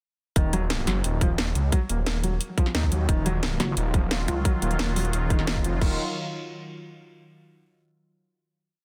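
Dark, tense technical drum and bass at 176 BPM in Eb minor drops in at 0.4 s with a tight, up-front electronic kick, a drum kit of cracking snare, metallic hats and crash, a thick detuned saw bass in chopped phrases, and a felt-muted upright piano cycling a mellow 16-step arpeggio through sidechain pumping and digital delay. From 3.1 s an airy, evolving resonant pad adds sustained chords with a filter swell, and at 3.6 s a pulsing, saturated pluck wobble bass joins briefly with modulated phrases before the piece settles on a final chord. The dry, dense and heavily limited mix gives the whole a futuristic edge.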